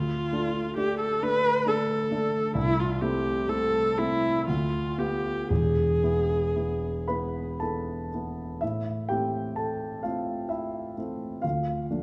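A close, warm viola carries a yearning, melancholic melody with vibrato, portamento and a soft attack in this romantic classical excerpt in A minor, moving in a rubato 3/4 at around 56-68 BPM. Beneath it, a dark, mellow concert grand piano gives intimate accompaniment with deep bass and audible action noise. The viola falls silent at 7.6 seconds, and the piano continues alone until 12.0 seconds, all within the wet reverb of a recital hall.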